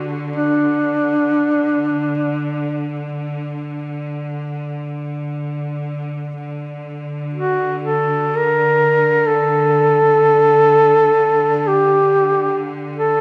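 Caucasian folk lament in free time and D major, longing and mournful, where a close-miked, warm duduk sings the melody up front between D4 and Bb4 with vibrato and scooped notes over a quieter, biting and intense bowed string section holding a vibrato-laden D3 drone, heard in a moderate church reverb.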